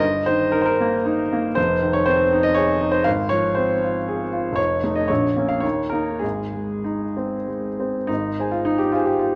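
A woody upright piano plays alone from the start, sitting up front with a long sustain in a moderate recital-hall reverb, in this short, hopeful and passionate romantic character piece in Ab major. The pianist moves in a rubato 3/4 between 94 and 123 BPM, tuned to A4 = 436 Hz and ranging from F1 to Ab5, with a natural, warm tone. The harmony passes from Eb/G through Fm7, F7 and Bbm before settling on Ab at 6.2 seconds, and the passage is cut from a longer piece.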